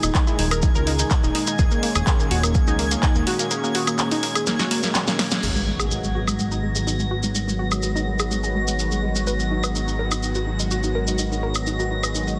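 Expansive and driving, this progressive house excerpt in G# minor moves at 125 BPM in a straight 4/4, cut from a longer piece and held over a D#sus4 chord before shifting to G#m7 at 5.4 seconds. A smooth, detuned sawtooth pad sustains chords beneath a round, warbling vintage pluck whose arpeggios carry chorus and dub echo, while a fat, thick sawtooth bass with a filter sweep anchors the low end, all three breathing with sidechain pumping. Up front, an overdriven, deep electronic kick drives the opening until 3.1 seconds, alongside a punchy house kit of snare, bright hi-hats, handclaps, woodblock and crash cymbal, with grainy, saturated maracas adding a mellow acoustic edge. High above, a twinkling granular texture sparkles with an octave-up shimmer and its own reverb, pumping with the groove. A drum fill and band accent lead into the second section, where a background electronic impact lands at 5.4 seconds. 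The mix sits in a moderate digital ambience and comes across as dense and heavily limited in a modern way.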